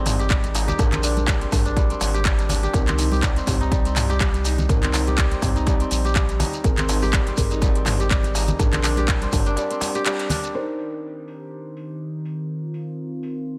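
A swung 16th-note groove at 123 BPM in C minor drives this hypnotic, spiritual afro house passage, cut from a longer piece, where a punchy electronic kick and a tape-warm house kit with metallic, low-passed hats, handclaps and toms sit over a round sine sub bass, while background congas, a deep clay darbuka and a grainy shekere accompany crisp, ringing kora arpeggios and thick-felt upright piano stabs. The kora, piano and bass pump with sidechain, and the kora and piano trail dub echo, until a break at 9.6 s gives way at 10.5 s to a smooth, warbling analog pad carrying a filter sweep.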